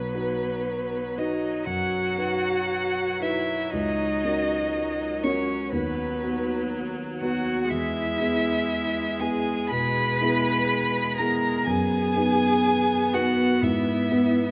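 A rich, smooth violin carries the lyrical melody up front, with vibrato, in this slow, rubato romantic piano quartet movement in B major at 60 BPM, over a cello second line, a distant viola accompaniment and a worn, warm baby grand piano with long sustain, all set in a moderate large-studio reverb and cut from a longer piece.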